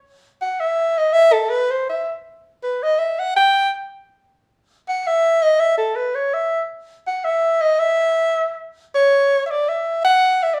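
A soprano saxophone opens this short musette in triple metre at 0.4 seconds, playing alone from its first note to the end at 10.6 seconds. The mood is charming and whirling, carried entirely by this single jazz-style voice. Its tone is dark and breathy, with soft attacks, scooped notes and vibrato, and it stays between A4 and G5. Close-miked and up front, the horn has a whispered, intimate quality, set in a moderate large-studio reverb that gives the room a sense of space. Around 8.9 seconds the tune moves into a new section before the piece is cut off.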